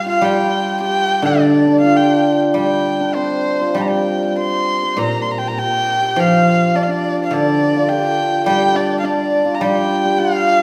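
Graceful and wistful, this short cut from a longer Chinese traditional chamber piece moves freely in rubato around 103 BPM in 4/4, set in the G yu mode. An intimate, up-front erhu carries the melody with vibrato, portamento and an airy bow, while a shimmering hammered dulcimer rings out a second line and a silvery guzheng, played with fingerpicks, supplies low accompaniment. All three play together across the full 10.6 seconds, turning to a new passage at 5.0 seconds, bathed in the generous reverb of a recital hall.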